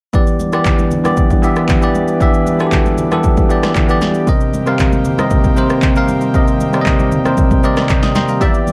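A bright, bell-like tine electric piano features in this hypnotic, late-night amapiano excerpt at 116 BPM in E minor, sitting clean and up front as it carries the accompaniment over Em7 and then Cm7 at 4.3 seconds. A layered, electronic deep house drum kit drives the straight 4/4 feel alongside it, its punchy kick and snare set forward with handclaps, rim click and shaker, sounding as if re-recorded in a small room. Behind them, an airy, breathy pad holds soft sustained chords with chorus, its slow attack and long release keeping it in the background, while medium-tuned acoustic congas ring very quietly beneath. The electric piano plays a fill from 7.4 to 8.4 seconds, and a punchy, wave-folded chord stab with chorus enters at 8.4 seconds. A digital ambience surrounds the mix.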